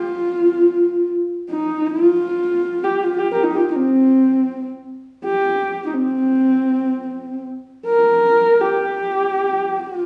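Drenched in a large studio's wet reverb and captured live, this 10.1-second fragment of Mongolian traditional music in free time and C yu mode features a single up-front horsehead fiddle, dark, woody and husky with a smooth top, bowed with vibrato and portamento between C4 and Bb4 to evoke a vast, windswept mood.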